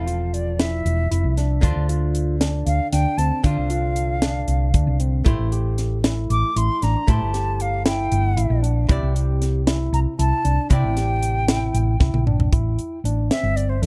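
A lightly reverberant mix opens this intricate, tense progressive instrumental in 7/8, moving at 231 BPM in eighths with a straight feel. A pure, expressive concert flute with vibrato and a soft attack carries the melody over dark, clean, compressed archtop guitar accompaniment, barky, lightly overdriven tine electric piano arpeggios, and a round, amped hollow-body bass that sits up front with a dry, tight funk kit and its high-tuned snare. The chords move through Fmaj7, Dm7, Am7 and Cadd9 until a drum fill at 12.0 seconds hands over to a short flute solo at 12.5 seconds as the guitar stops, in this cut from a longer piece.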